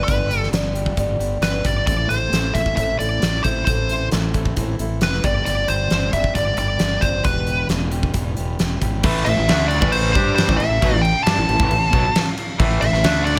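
A straight 4/4 pulse at 134 BPM drives this angsty, dark slice of quiet-loud alternative rock in A minor, cut from a longer piece. A huge arena drum kit sits up front with a fat snare, punchy kick, hi-hat and crash in a big room, while a growly fuzz bass, fingered and overdriven, holds the low end. Over picked arpeggios from a warm acoustic archtop guitar, an up-front lead guitar with a nasal, parked wah and overdrive carries the melody through chords moving from G to Am, G and Em. At 9.0 seconds the archtop stops and the loud half arrives on an A5 chord, as two double-tracked overdriven guitars enter on the riff: a bright, raw garage guitar and a distorted electric guitar set further back. Light reverb gives the whole a touch of space.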